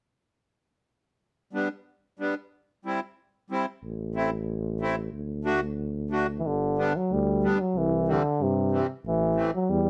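A reedy accordion opens this short fragment of jolly, bouncy alpine folk at 1.5 seconds, its full, close-miked tone carrying a slow beating as it lays down accompanying chords of G, C, A minor and D. The tune moves in a 2/4 metre at 92 BPM in G major, with a loose, rubato feel. At 3.8 seconds a tuba enters on the bass line, its vibrato and roomy, distant character contrasting with the dry accordion even as it sits up front in the blend. At 6.4 seconds a new section begins as a warm euphonium takes up the melody in a classical style, placed prominently in the mix. The overall sound is intimate and detailed, captured with close microphones and little reverb.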